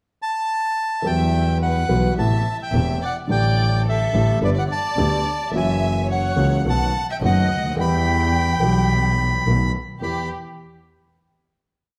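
Piano and double bass drive this complete tango with a rhythm of uneven groups of three and two eighths, at 107 BPM in 4/4 with a rubato feel, in E minor. The mood is tense and melancholic. A reedy, airy bandoneon opens alone with a pickup at 0.2 seconds and sits up front, carrying a motif-based melody built in period phrases. From 1.0 seconds a lush violin section plays a harmony line, mostly in thirds, with vibrato and portamento. An intimate concert grand with deep bass and audible action noise gives a vintage accompaniment, and a close, focused bowed double bass with vibrato follows just after. The harmony moves from Emadd9 through Amadd9, G and F#7 to B7, settling on a final Em chord at 10.0 seconds inside a wet, large studio reverb.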